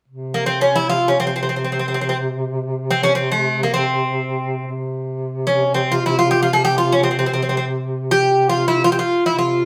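A picked acoustic Greek bouzouki carries the melody up front from 0.3 s, its doubled, partly octave-strung courses ringing with a warm metallic edge as it moves freely through makam hicaz on C. Beneath it, a close-miked duduk holds a warm folk-style drone on C3 from 0.1 s, colored by vibrato and scooped notes. Played live in one room with a wet studio reverb, this festive yet stately Turkish fragment unfolds in free time as a single unbroken section cut from a longer piece.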